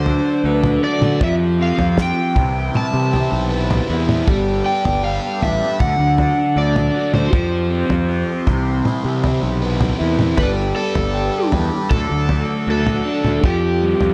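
Lightly reverberant and hypnotic, this kaleidoscopic psychedelic rock excerpt at 78 BPM in G mixolydian puts a bright, double-tracked fuzz guitar riff with phaser and a round, dark, overdriven fuzz bass up front, while a damped 70s drum kit with tight kick and dry snare enters at 0.1 seconds, a reedy vintage combo organ holds sustained chords in the background, and an overdriven slide guitar played with fingerpicks carries the melody through slapback echo over a repeating cycle of D, Fsus2, Cmaj7 and Gadd9.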